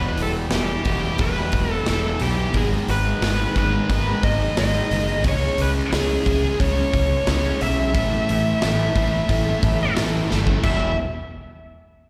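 A fuzzed, fingered electric bass sits up front, punchy and overdriven, carrying the low end of this angsty, dark alternative rock excerpt at 89 BPM in a straight 4/4, tuned slightly below standard pitch. Beside it, a bluesy lead guitar sings the melody with a gritty distorted tone, soaked in plate reverb with slapback and tape echo. Behind them, a warm steel-string acoustic guitar picks arpeggios, a biting overdriven guitar with its own slapback echo plays a riff, and a very quiet, bright, compressed distorted electric guitar plays a riff of its own in the same register. A big acoustic rock kit enters at 0.2 seconds with a punchy kick, a medium-tuned snare, hi-hat and bright crash cymbals ringing in a large room. The harmony moves from Em through G#m, C#m and A, and a drum fill at 10.3 seconds leads into a new section at 10.6 seconds, where the music returns to Em. The whole take sounds like a live gig heard through a venue's PA, with the light reverb of a recital hall around it.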